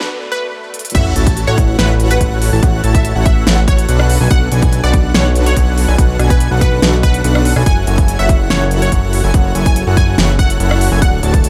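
Euphoric and bright, this future bass excerpt at 143 BPM in A major rides a half-time feel, opening on a brief break where a mellow, slightly out-of-tune tine electric piano with tremolo sits in the background beside a riser, swell and sub drop, all under a high-passed digital ambience. From the very start, a lush, punchy unison pluck melody with phaser and digital delay, a huge, compressed supersaw riff and a big-room dance kit are already running. At 0.9 seconds the drop hits with an impact, as an overdriven, hard-clipped electronic kick and a fat, detuned analog bass with a filter sweep push up front, both pumping under sidechain. Soft, airy arpeggios from a dreamy chorused lead join the pluck and supersaw, while the kit adds a huge snare, crisp hats, rim clicks and crashes over chords moving from A6 through Bm7 to F#m7.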